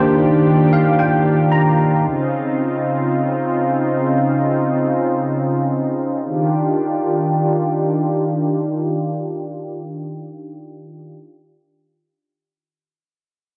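This amapiano excerpt floats in free time in Eb major, with a relaxed, warm mood and a dark production under light reverb. A bell-like, clean tine electric piano sits up front at the opening, with a fill between 0.5 and 2.0 seconds before it stops at 2.1 seconds. Beneath it, a lush, detuned unison pad holds sustained chords through to 11.2 seconds. The pad's soft attack and airy noise layer give it a thick, chorused body, and a low-pass filter sweep shapes the opening passage. The harmony moves from Ebmaj9 to Dbmaj9, then returns to Ebmaj9 as a new section begins at 6.3 seconds.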